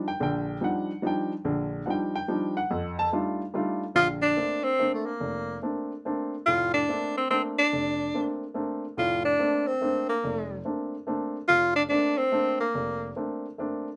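A moderate studio reverb surrounds this hypnotic, spiritual jazz excerpt in a swung 3/4, with an intimate baby grand piano up front, its short sustain and audible action noise giving it a natural feel as it comps through Ebmaj9 and F13. At 4.0 s the tenor saxophone enters up front with the melody over a Bbmaj9, playing in a warm jazz style with vibrato, scooped notes and a smooth top.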